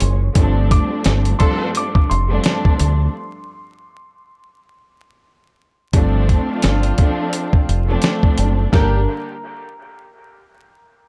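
A deep, round fingered electric bass sits up front in this moody, reflective boom-bap hip-hop cut, punchy and direct as it anchors a G minor groove at 86 BPM in 4/4 with a swung sixteenth feel. Beside it, a gritty, compressed sampler-style drum kit delivers a thumpy kick, fat snare and hi-hat, while a lush, distant string section bows woody, vibrato-tinged chords beneath. A mellow, vintage upright piano carries the melody in the opening seconds, filtered and trailed by dub echo, before dropping out at 3.1 seconds for a break that runs to 5.9 seconds. A jazz-style horn section adds brief filtered stabs with light vibrato early on, then returns at 5.9 seconds alongside a G9sus4 chord, its echoes hanging in the dry, echo-heavy mix. Vinyl crackle dusts the sound, and the piano reappears briefly on a G minor chord at 8.7 seconds as this fragment of a longer piece cuts off.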